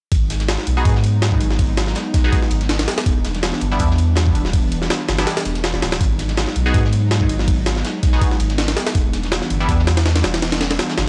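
A 163 BPM drum and bass groove in 4/4 with a light 54% swing on the sixteenths drives this raw, atmospheric jungle excerpt, which sits in a drop from start to finish. Up front, a compressed, pitched-up sampler-style kit delivers a thumpy kick, a high-tuned snare and ride cymbal, re-recorded in a large room with a tape-warm grit. Beneath it, a very quiet acoustic breakbeat kit adds saturated hi-hat and a medium-tuned snare with a rolled-off top. A deep, round dub sub bass holds the low end, while an airy, breathy pad with detuned sawtooth layers, a noise layer, a moving notch and chorus sustains mellow chords, alternating between G#m7 and Em7 roughly every three seconds. From 0.8 to 9.8 seconds, a nasal, band-passed chord stab with a filter pluck plays, bright and decaying, colored by phaser and dub echo. The whole mix has a dry, gritty hardware character, with transformer saturation and a cassette-tape feel.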